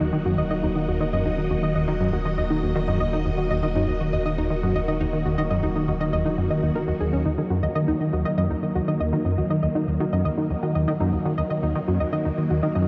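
Ambient, sequencer-driven space music in Eb minor, this short cut from a longer piece moves at 120 BPM in a straight 4/4 and feels expansive and cosmic. A phased string machine holds sustained chords from start to finish, its vintage sawtooth tone bright and swirling under ensemble chorus and phaser, sitting up front with a slow attack. Beneath it, a plucky analog bass drives a punchy, funky riff with a fast attack and decaying, evolving filter pluck, thickened by lush chorus and analog delay. A soft round pluck traces gentle, mellow arpeggios through chorus and analog delay. A deep, round analog bass sustains a low Eb until 7.2 s, just before the piece shifts into a new section at 7.3 s. The whole is bathed in a huge ambient reverb with a long tail, and the production stays dark, with nothing above 7.7 kHz.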